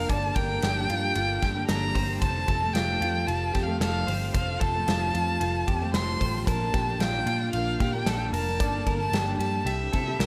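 This nostalgic, breezy slice of jangly indie pop in F major opens with a bowed violin singing the melody up front, its vibrato and portamento making the line expressive, while a picked jumbo acoustic guitar sits full-bodied in the background and a foam-muted electric bass lays down a dark, round low end. A moment later, at 0.1 seconds, a big rock drum kit joins with a punchy kick, a medium-tuned snare, hi-hat and bright ride cymbal ringing in a big room. From the very start, arpeggios from an electric guitar through a small old amp add a slightly broken-up, compressed edge, and a very quiet vintage string machine holds lush sawtooth chords with a sub octave, soft attack and ensemble chorus. The tempo is a straight 113 BPM in 4/4, moving through Gmadd9, F, Bb and back to Gmadd9 before landing on C. Tape echo trails the violin and both guitars, and light reverb with studio ambience gives the mix an echo-heavy sheen in this 10.3-second cut from a longer piece.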